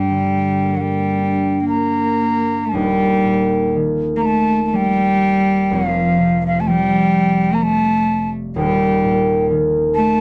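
In a rubato 3/4 lilt, this haunting, mournful Celtic slow air, cut from a longer piece, sets an airy wooden flute melody with vibrato over a close, reedy, gut-strung bowed cello second line and bright, ringing thumb-plucked concert harp, all up front in a booth with a dark production.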